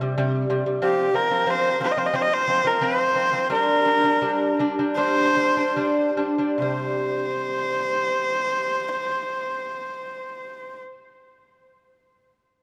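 A huge, moderate ambient reverb surrounds this solemn, vast Mongolian folk excerpt in 4/4, moving between 70 and 93 BPM and slowing from 0.8 to 6.6 seconds, as a delicate fingerpicked lute with double nylon strings plays up-front arpeggios from the start while a clear, nasal, husky horsehead fiddle enters at 0.8 seconds with a bowed melody carrying light vibrato and portamento, over chords moving through C5, F5, G5 and back to C5.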